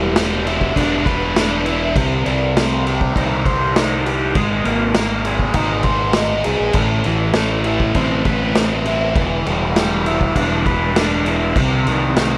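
Mysterious and dark, this short psychedelic rock cut from a longer piece moves at 100 BPM in a straight 4/4, tuned to A4 = 438 Hz. An overdriven, double-tracked electric guitar riff sits up front with a phaser over a shifting Em7, Cm, G#add9 and Amadd9 progression, while a round, fuzzy fingered bass holds the low end. From 0.2 seconds a vintage acoustic kit adds a boomy kick, medium-tuned snare and shadowy cymbals in a small, pumping room, all under a light reverb.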